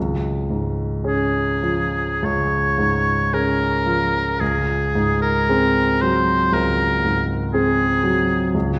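Lyrical and serene, this short romantic classical fragment for oboe and grand piano drifts at a slow, rubato 49-59 BPM in 4/4, with the intimate, clear-toned baby grand opening on a Db chord and its audible action noise and long sustain heard up close, before the bright, present oboe enters at 1.1 s with a solo melody in light vibrato over a shift to Ab7/Db at 4.4 s, all set in a wet recital-hall reverb with a dark, warm production.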